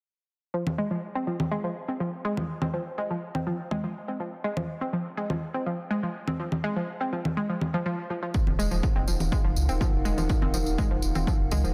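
A straight 4/4 pulse at 123 BPM drives this dark, hypnotic melodic techno excerpt in F phrygian: a detuned, ring-modulated analog pluck arpeggio with chorus, delay, sidechain pumping and a filter sweep opens at 0.5 s over Fm, with tape-warm, up-front congas joining at 0.7 s, before a punchy electronic kick, a jingly tambourine and a moody, wave-folded analog pad with subtle chorus and pumping arrive on Ebm at 8.3 s, joined by a round, deep analog bass at 8.5 s, within light reverb and a dense, heavily limited master.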